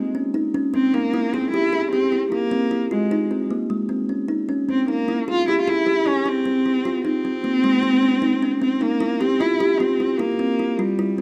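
Urgent yet pensive, this short contemporary instrumental moves at a brisk 152 BPM in an uneven 5/4 metre with a straight feel, tuned to A4 = 442 Hz. A kalimba plays arpeggios throughout the 11.2 seconds, its thumb-plucked tines sounding woody and hollow, with a full, ringing tone that sits close and up front. A single bowed cello carries the melody over the same span, rich and expressive, with vibrato, soft attacks and portamento slides. The harmony turns between Ab and C colours, starting from a rootless Ab and moving through C7, Abadd9 and C before returning to C7 at 9.0 seconds. Close, detailed microphones capture both instruments, while a moderate recital-hall reverb of about 1.7 seconds surrounds the recording.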